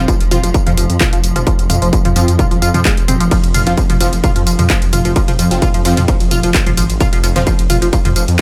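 A straight 4/4 pulse at 130 BPM drives this dark, relentless peak-time techno excerpt, cut from a longer piece and built over an F5 chord. A distorted, layered electronic kick sits up front, while a punchy analog drum machine adds overdriven handclaps, hi-hat, ride cymbal, tambourine and toms, both re-recorded in a large room. Beneath them a dark detuned saw bass rumbles and beats between Eb1 and F2, saturated and pumping against the sidechain. A tight sequenced synth riff, entering at 0.1 s, runs between F3 and F4 with a mellow, wave-folded pluck coloured by chorus, phaser, tube saturation and tape echo. Aggressive, thick rave stabs cut through brightly over the same range with a moving notch, chorus, reverb and digital delay until 7.4 s, while a very quiet swarming drone on F3 evolves tensely in the background. The mix carries light reverb and digital ambience at a loud overall level.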